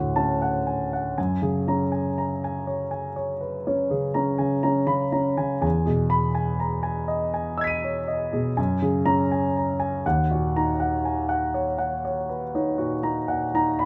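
A polished, up-front grand piano sits in light reverb, its warm tone filling a brief impressionist classical passage that feels mysterious and wistful. The solo piano plays freely in rubato at a slow 40 BPM in 9/8, ranging from D2 up to D#7. Its harmony drifts from Dmaj7 through F#add9 and Emaj7 before settling on D#m7 near 10.0 seconds, and this fragment of a longer piece runs until 13.9 seconds.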